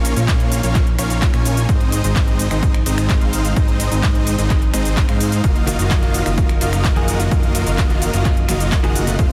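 An anthemic, emotional stretch of festival progressive house at 128 BPM, built on a huge, detuned supersaw riff with tape echo and sidechain pumping, over a fat, saturated analog bass and dark, woody symphonic strings sustaining chords in the background. A big-room kit of crisp hats, handclaps, finger snaps, ride and shaker plays from the start, and a punchy overdriven kick joins it at 0.3 seconds, both re-recorded in a large room, as the chords move from Bbm to Ab and then Ebmadd9/Gb. At 5.7 seconds a bright, clean, direct-recorded electric guitar joins in the background with picked accompaniment, all inside a dense, heavily limited modern master.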